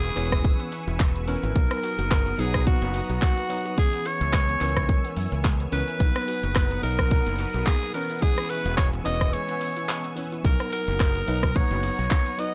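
A dry, gritty recording with digital ambience carries this sunny, feel-good nu-disco excerpt, where a raspy tenor saxophone with light vibrato and scooped notes sings the melody over a bright tine electric piano, a lush detuned pad pumping with chorus and phaser in the background, a very quiet wave-folded unison pluck playing arpeggios, a fingered electric bass, a tape-warm house kit of handclaps, hi-hat, rim click and shaker, and a punchy, up-front electronic kick, all moving through a swung groove with a brief break from 9.3 to 10.4 seconds.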